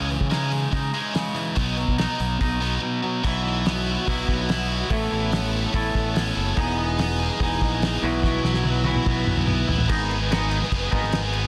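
Densely limited and modern with a light reverb, this brief cut from a longer indie rock piece moves at 144 BPM in a straight 4/4, with a jangly, carefree mood. Up front, a scooped, high-gain guitar with bright distortion and a clean, twangy electric guitar steeped in lush chorus and tape echo play riffs over a punchy, fuzz-overdriven fingered bass and a dry, cloth-damped drum kit with a fat snare, tight kick and dark cymbals. At 3.2 seconds a shimmering vintage string machine of violins enters in the background with slow-attack sustained chords, and a drum fill runs from 8.2 to 9.9 seconds before the harmony lands on G#m.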